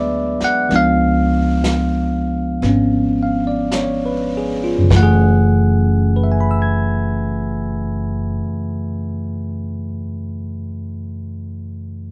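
This jazz ballad excerpt in F# minor drifts along in 4/4 at 48-68 BPM with a swung eighth-note feel, slowing down over the first 4.9 seconds, and its mood is melancholic and smoky. A bell-like tine electric piano carries the accompaniment from start to finish, its bright, clean tone sitting direct and up front across a range from F#2 to G#6. Beneath it, a pizzicato upright bass with steel strings adds a woody low end until 8.4 seconds, while a vintage brush drum kit plays brushed snare, hi-hat and kick only from 0.4 to 5.9 seconds, sounding dark and smooth with a punchy kick and a rolled-off top. The harmony moves from G#m7b5 to C#7b9 and settles on F#m9 at 4.9 seconds as a new section begins. The band plays live in one room, wrapped in a moderate large studio reverb that gives the ensemble a gentle sense of space.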